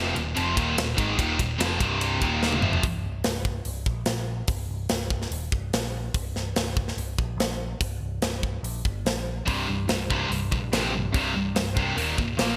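Hard rock with a heavy, aggressive mood, opening on a riff played by a crunchy overdriven guitar with phaser and an up-front, scooped high-gain guitar, both dropping out at 2.8 seconds and returning at 9.5 seconds. A dark, round, punchy picked bass holds the low end throughout, while a tight metal drum kit with bright cymbals and gated reverb plays hi-hat, kick, ride, snare and toms, with a fill at 2.4 seconds. The bright, 1980s-style digital production carries light small-room reverb, and this short cut comes from a longer piece.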